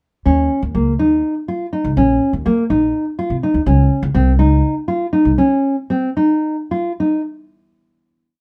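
A light reverb gives this short, complete piece an intimate, close-up sound, with both instruments placed up front. It is contemporary chamber music in an uneven 7/8 meter, playful and hopeful in mood. The nylon-string guitar plays an ostinato of thumb-plucked arpeggios in its middle register, its fresh strings full-bodied and deep in a classical manner, with audible finger squeaks. Beneath it, the upright bass plays a syncopated pizzicato riff on gut strings, woody, dark and thumpy, until it stops at 5.4 seconds. The harmony moves from an Eb7 chord to a Dbmaj7 at 3.7 seconds, where the music begins slowing down, and the guitar rings on alone until 7.2 seconds.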